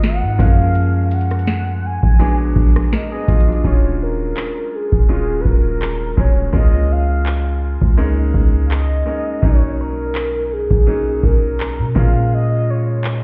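A sensual, longing slice of contemporary R&B opens with everything at once: a booming, dry analog drum machine up front with its deep kick, crisp snare, rim clicks, handclaps and metallic hi-hats, beside a deep, boomy 808-style bass with a fast attack that decays. Over them a clear, intimate baby grand piano carries the chords, its action noise audible, while a mellow, round, horn-like synth lead sings the melody with soft attack, vibrato, chorus and delay. At 3.6 seconds the hi-hats drop away. Throughout, the whole mix sounds muffled, as if heard through a wall, wrapped in stone room reverb.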